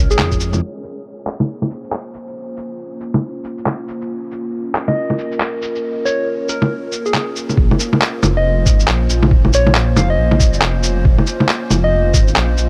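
Wistful and nocturnal, this future garage excerpt sways in a swung 4/4 over a warbling, lo-fi pad of sustained chords with chorus and its own reverb, pumping against the sidechain, while up-front shakers, handclaps and bongos sound muffled, pitched down and tape-warm as a filter sweep runs over the drums and pad from 0.6 to 7.6 seconds. After a brief opening phrase, a gentle, keys-like FM lead with chorus and analog delay returns at 4.9 seconds to carry the melody, round yet bright. At 7.6 seconds a thumpy, compressed kick and a deep, rumbling detuned saw bass return after their fleeting appearances at the start, the bass beating and pumping beneath the mellow haze.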